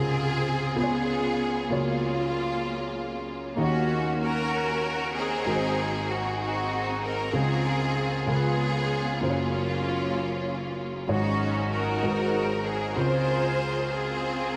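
A dreamy mix soaked in huge, wet ambient reverb gives this gospel passage a hazy, cathedral-like glow, and it sounds cut from a longer piece. At a slow 64 beats per minute in 6/8 in Db major, the mood is reverent and hopeful. A clear, focused studio string section carries the melody up front, its bowed ensemble sound lush with vibrato and trailed by a tape echo. Beneath it, a woody, natural upright piano plays the accompaniment throughout, its tone lightly thickened by a subtle chorus. The harmony moves from Dbmaj7 through Gbmaj7 and Ebm7 to Ab7, then passes through Ab7sus4 before settling back on Dbmaj7 at 13.0 seconds.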